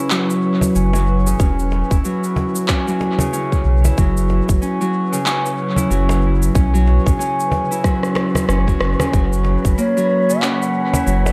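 Meditative and hypnotic, this organic downtempo excerpt sets a bright, ringing fingerpicked Celtic harp up front over a round sub bass, a background pad shimmering with chorus and phaser, woody cajon, an electronic kick with dub-echoed handclaps, shaker and rim click, and a drum fill at 7.8 seconds, before a breathy wind-like texture and a mellow bamboo bass bansuri with vibrato and tape echo drift in near the end in an echo-heavy, spring-reverb mix.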